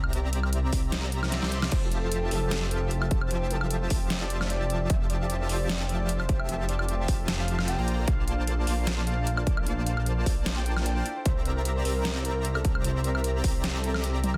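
A bright, nasal polysynth riff, a thick detuned saw bass and an overdriven dubstep kit with a deep snare all open this playful, euphoric future bass excerpt at 151 BPM in F major, the pumping, chorus-laden sustains of the synth and bass breathing with the half-time swing. A punchy, up-front electronic kick arrives at 0.7 seconds, and after a drum fill a velvety sawtooth lead with vibrato and dub echo takes the melody at 1.7 seconds. A fingerpicked concert harp rings in the background with digital delay, carried over chords moving from Fmaj9 to Bbmaj7 and C7 under a dense, heavily limited master with light reverb.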